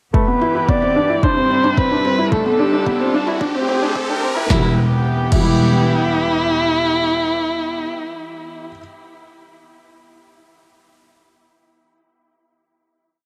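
A dark, bowed viola with vibrato and portamento carries an arching, motif-based melody up front in this cinematic, intimate piano and strings electronica piece in E minor at 110 BPM, over a muted felt upright piano ostinato with tape echo, a reedy gut-string chamber section holding sustained chords and a double bass section playing long gliding notes, both pumping with sidechain, while an overdriven four-on-the-floor kick and a restrained deep house kit of punchy snare, low tom and crash drive a filter-swept build, topped by a riser from 2.3 to 4.5 seconds, into a final E minor chord at 4.5 seconds.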